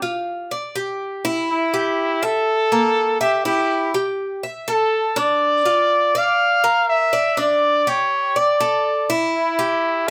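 A bright, metallic Cuban tres opens this short Latin excerpt, picking arpeggios on its doubled strings, some of them octave-doubled, with a crisp acoustic presence placed up front. At 1.5 seconds a warm trumpet enters with a solo melody in a pop style, shaped by light vibrato and scooped notes. The trumpet sits up front yet carries a distant, roomy quality, colored further by its plate reverb. The pace is moderate in a straight four, and the harmony moves through G5, Edim, A5, Bb and Gsus2 before the chords fall away at 9.3 seconds. A small room adds a modest ambience, and the mood is nostalgic and warm as both parts carry on until the cut at 10.1 seconds.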